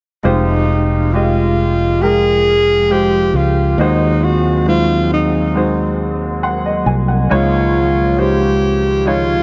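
Pop ballad in F minor at 68 BPM, emotional and full of longing, cut from a longer piece. A clear alto saxophone carries the melody from 0.3 s, up front with a soft subtone and a jazz-inflected solo voice, while a woody, slightly detuned upright piano supplies the accompaniment and adds a fill between 6.0 and 7.3 s. Underneath, a growly, punchy fretless electric bass sits close and direct, and from 1.5 s a glassy FM pad, very quiet and ethereal with a slow attack and chorused shimmer, holds sustained chords behind the band. The harmony moves from Fmadd9 through Ab7/Eb to Dbadd9, and the tuning sits slightly low at A4 = 435 Hz. A lush hall reverb surrounds the parts, and the whole recording carries the worn, warbling pitch drift and dulled top end of old cassette tape.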